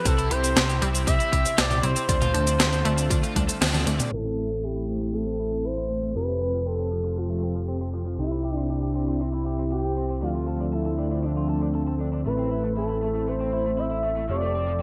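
Bright, hall-washed 1980s-style digital production frames this nostalgic, nocturnal synthwave excerpt in A minor at 118 BPM, where a smooth portamento lead with vibrato and sampler grit sings the melody over soft, detuned supersaw chords and a round, punchy picked electric bass that both pump with the sidechain. A bright unison pluck arpeggiates until about 4.0 seconds, and a layered electronic kick punches until about 3.5 seconds. An overdriven electric guitar riff runs throughout, with a filter sweep from 4.1 seconds, while a sampler-style drum machine drives gated-reverb snare, hi-hat, cabasa and toms through a fill into the change at 4.1 seconds. From that point on, a dark, very quiet synth brass adds stabs.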